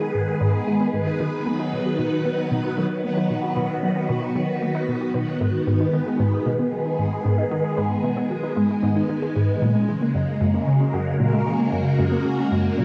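Ambient, sequencer-driven space music in G# minor at 114 BPM, cut from a longer piece, with a mysterious, cosmic mood and a chord path from G#m through B to F#add9. Up front, a swirling, vintage string machine holds sustained chords through ensemble chorus, phaser and shimmer reverb. A round, detuned analog pluck carries a low riff with chorus and delay. Further back, a warbling, lo-fi pluck plays mellow arpeggios under a filter sweep, its ring-modulated, noisy tone blurred by cassette tape, delay and shimmer, all set in a small, wet booth with a home-cassette character.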